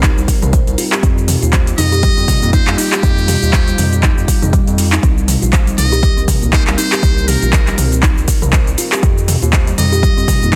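Afro house with a driving, warm mood and a swung groove, this excerpt is anchored by an up-front overdriven electronic kick and a deep house kit of cabasa, handclaps, metallic hi-hats and toms, while a round, wave-folded analog bass pumps beneath. A woody kalimba plays short arpeggios through delay, and a moody, detuned analog pad holds sustained chords in the background with chorus, both pumping against the kick. At 1.8 seconds a close-miked trumpet with a metal mute enters with a buzzy, thin solo melody of scooped notes and delay, all set in a dry, dense, heavily limited modern mix.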